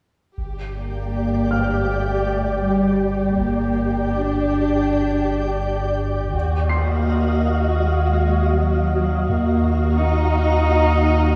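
A straight 4/4 pulse at 81 BPM carries this mysterious, eerie cinematic fragment, where a shadowy violin section bowed sul tasto with vibrato sings a narrow melody over an intimate, up-front cello section, a woody, distant double bass section and a deep, punchy sine sub bass drone, while a flickering, grainy granular texture sustains chords from 0.8 seconds and a brilliant grand piano adds background shimmer from 1.5 seconds, all moving from Gm to Ebmadd9 at 6.3 seconds inside a wet scoring-stage reverb heard from further back in the room.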